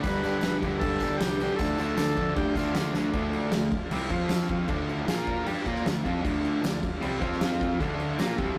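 Rough and saturated like a rehearsal-room take, this swaggering, raw garage rock excerpt drives in straight 4/4 with a double-tracked, compressed fuzz guitar riff and a boomy, pumping drum kit with fat snare and dark crashes up front, a buzzy overdriven combo organ melody that drops out at 2.9 seconds just before a drum fill, a very quiet vintage organ holding heavy-vibrato chords throughout, and a picked fuzz bass and jingly, distant tambourine sitting in the background.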